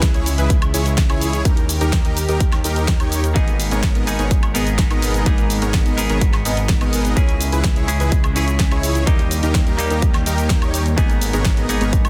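Powerful and anthemic, this short cut of festival progressive house drives forward with a straight feel, cycling through C#m, D# and G#madd9 twice in twelve seconds. An overdriven, punchy electronic kick sits up front, layered with a pop drum kit whose fat snare, hi-hat, shaker and woodblock carry a small-room character. Underneath, a detuned saw bass with chorus lends a thick low end. The dense compressed supersaw riff is the centerpiece: huge and airy, with a sub octave and noise layer, vibrato, a cassette-tape grit and dub echo trails. A lush unison pad holds bright, chorused chords in the background, and a clean semi-hollow electric guitar joins at 3.3 seconds with picked accompaniment fed through dub echo, while the pad, supersaw, bass and guitar all pump against the sidechain. Light digital ambience frames a dense, heavily limited modern master.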